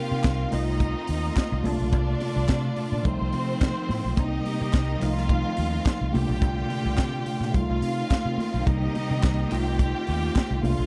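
Sultry and glamorous, this short disco clip rides a straight groove from a tight funk drum kit with a high-tuned snare and a round, punchy fingered electric bass up front, while a mellow tine electric piano comps through Cm7, F7/C and Bbmaj7 changes, a biting studio string section carries a second line above distant, focused symphonic strings holding lush chords, and very quiet soft-handed congas and crisp group handclaps in the background round out a dark, warm small-room mix.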